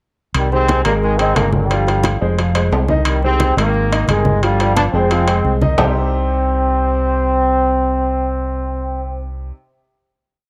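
This is a short, complete salsa piece in C minor at 177 BPM, driving and fiery, and it opens at 0.3 seconds with a dark, round fingered electric bass playing a punchy tumbao that anticipates the chords, alongside ringing metal-shell timbales working shell pattern and bell. A bright trombone section carries the motif-based melody in song-like phrases, partly doubled in thirds with light vibrato, sitting up front yet sounding distant and roomy through a cassette-tape colour. Low-tuned congas with a thin skin add slaps and open strokes from the background, close and dry, while a clear, woody upright piano plays a polished montuno in octaves. The montuno vamp cycles through Cm, Absus2, G5 and Fm7 until the percussion drops out at 5.9 seconds. Bass, trombones and piano then hold a final Cm chord, with the trombones releasing at 9.3 seconds and the bass and piano carrying on to the end at 9.5 seconds. 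The whole take has the feel of a home cassette recording, with moderate spring reverb and a small-room ambience.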